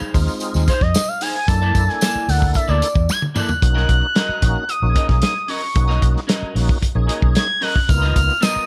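Over a straight 4/4 funk groove at 112 BPM, a dry, muffled soul drum kit with a tight kick sits up front beside a dark, foam-muted electric bass, while a jingly tambourine shakes through the opening 3.6 seconds, drops out after a drum fill, and returns at 7.9 seconds. A clean, picked semi-hollow guitar with analog chorus and a lightly overdriven tonewheel organ, its stabs turning through a slow rotary speaker, fill out chords moving from Fm7 toward Bmaj9 and Db13. Entering at 0.7 seconds, a smooth sawtooth lead with soft attack, portamento and vibrato carries a sly, cool melody high above this short cut from a longer piece.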